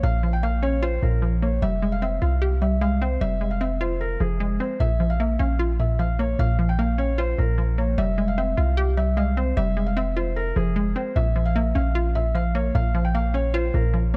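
A felt-muted upright piano, a hollow square-wave pluck and a boomy 808-style bass all sound together from the first moment of this melancholic, eerie trap excerpt, cut from a longer piece. The track runs at 151 BPM in 4/4 with a half-time feel, sitting in F harmonic minor and tuned to A4 = 436 Hz. The soft, intimate piano carries the melody between Ab4 and G5 with a touch of delay, while the detuned, bouncy pluck plays accompaniment from Bb2 to G4, bright and up front with chorus on it. Underneath, the deep sine 808 holds the low end from F1 to C2 with a fast attack and decaying tail. The harmony moves between Bbm and Fmadd9, with a second section arriving at 8.0 seconds, all wrapped in a dark production with light studio reverb.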